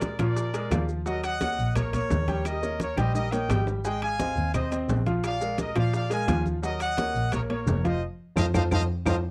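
A driving, danceable salsa passage at 172 BPM, cut from a longer piece, opens with a bright, vibrato-laden trumpet section carrying the melody up front over a brilliant, woody upright piano with audible action noise, a bowed, soft-attack double bass, close, grainy maracas, and background percussion of thin-skinned congas, round low-tuned bongos, ringing metal-shell timbales and woody claves entering at 0.2 seconds, all in a dry, close 1970s-style studio sound, with drum fills at 2.5 and 8.4 seconds and a band accent from 8.0 seconds as the chords move from Bb7 through Ebm7, Eb7 and Ab to F7.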